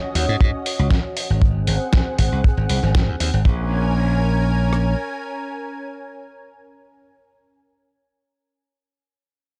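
Nu-disco at 118 BPM in 4/4 with a straight feel, this short cut from a longer piece sits in Bb minor and carries a sleek, sensual mood. A lush, detuned unison pad built from sawtooth and square waves holds sustained chords from the start to 7.1 seconds, its slow attack and long release thickened by chorus and pumped by sidechain compression. A glassy, punchy electric slap bass sits up front with a bright, direct tone. Two drum kits share the beat: a damped 70s acoustic kit supplies a tight, dry kick and rim click until 4.9 seconds, while a dusty, sampler-style soul kit adds compressed, tape-warm hi-hat and a medium-tuned snare until 3.3 seconds. The harmony moves from Ebm7 to Ab7 before settling on Bbm7 at 3.5 seconds, and the whole mix carries the dry, gritty character of a hardware recording on cassette tape.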